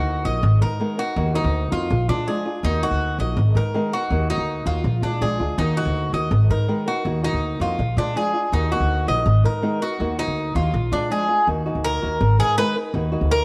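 A small room with light reverb frames this short latin passage, cut from a longer piece, with the upright bass and Cuban tres placed up front. At 163 BPM in a straight 4/4, the mood is warm and danceable, circling Abmadd9, Ebm and Bb7 in Eb harmonic minor. The pizzicato upright bass sounds woody and growly on steel strings, giving a thumpy, dark low end from Ab1 to Bb2. The picked tres plays arpeggios with a metallic ring from its double strings, some doubled at the octave, and takes a solo from 11.5 s to the close at 13.4 s. Beneath them, a small, fingerpicked nylon-string guitar carries the accompaniment, with an audible finger squeak.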